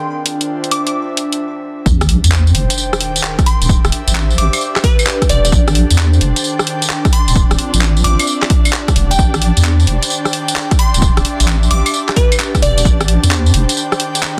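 Skippy and late-night, this 131 BPM two-step UK garage cut in A minor swings its 16ths over a brief intro of glassy pluck melody, airy breathy pad, soft string-machine chords and bright-hatted garage drums of claves, handclaps, rim clicks and tambourine, then at 1.9 seconds drops in a punchy overdriven kick, a deep wobbling bass and a sub-drop impact, with pumping strings and pad under Dm11, Em11, Fm11 and Am7 chords in a dry, dense, heavily limited mix.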